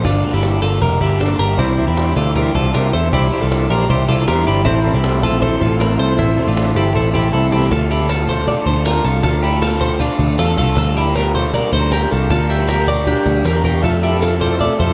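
A bright, twangy twelve-string electric guitar fronts this excerpt from a longer piece, picking clean, compressed arpeggios up front, bathed in spring reverb and a diffuse ambient delay. It's jangly indie pop at 157 BPM in a straight 4/4, wistful and restless, moving from Gm to Cadd9, then Bb6 and finally Fmaj7. Beneath it, a dark, round, foam-muted electric bass sits up front, while a raw, overdriven garage guitar with phaser picks in the background and a woody cajon with faint snares plays soft and distant, with a drum fill from 7.3 to 7.7 seconds. A reedy, overdriven combo organ with light vibrato comes in at 1.6 seconds, drops out after 7.7 seconds and returns for the closing moments, and a jingly tambourine joins quietly in the background from 7.9 seconds. The whole mix is dreamy and soaked in a moderate cathedral reverb.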